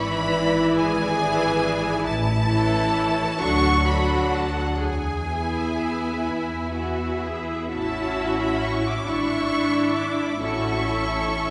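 Tender and lyrical, this slow romantic movement for string orchestra sways in a rubato 6/8, cut from a longer piece and heard from further back in a reverberant scoring stage. A focused, up-front violin section sings the melody with rich vibrato above a smooth, even second violin line, while intense, lush violas fill in the accompaniment. A close cello section sits in the background beside distant double basses with light vibrato on the bass, and all five bowed sections play together for the full 11.5 seconds.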